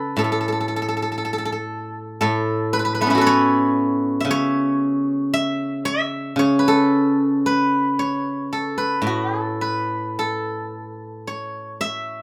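A silvery, ringing steel-string zither, played with fingerpicks and placed up front, performs alone in this pastoral, elegant excerpt of Chinese traditional solo plucked-string music, moving with a free rubato feel through a moderate small-room reverb before a new section begins at 10.7 seconds.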